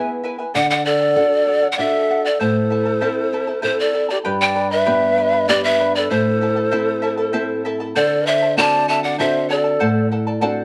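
Melancholic and earthy, this excerpt of Andean folk moves at 97 BPM in a straight 3/4, with a hollow, bamboo-toned pan flute carrying the melody up front with vibrato and a chiffy, crisp attack while a breathy, unsteady wooden quena plays a quieter second line beneath it until 10.1 s. A shimmering, bright charango with double strings and a small, dark nylon-string guitar, both fingerpicked, supply the accompaniment through chords moving from E and D to Am, then G, Am and D7. Close, detailed microphones and light reverb give the ensemble an intimate sound as it passes from a short opening section into a second one at 4.3 s.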